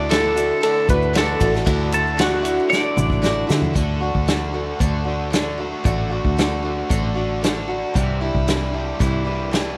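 A jangly, warm slice of folk rock and heartland rock cut from a longer piece, opening on a bright, twangy twelve-string electric guitar melody with spring reverb and slapback echo that stops at 3.4 seconds, over a boxy picked archtop acoustic, a double-tracked overdriven guitar riff with its own spring reverb, and a round, foam-muted fingered bass up front. An unplugged drum kit played with bundle sticks, with dark cymbals and a tight kick, plays alongside a grainy tube shaker that sits in the background until 3.7 seconds, and a drum fill at 2.7 seconds leads into the second section as the harmony moves from Dadd9 to D and later Cadd9. The whole sits in a small room with light reverb.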